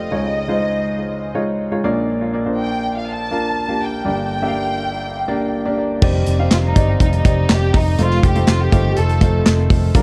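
Hopeful and uplifting, this piano-driven pop piece at 122 BPM in F mixolydian opens with a clear, worn grand piano and a smooth, bowed violin section carrying the vibrato-rich melody, both touched with tape echo, before a very quiet, detuned analog pad, a dark, round picked electric bass and a punchy, up-front studio drum kit with handclaps, hi-hat and crash cymbal arrive at 6.0 seconds, the mix set in light small-room ambience with an echo-heavy cassette-tape character.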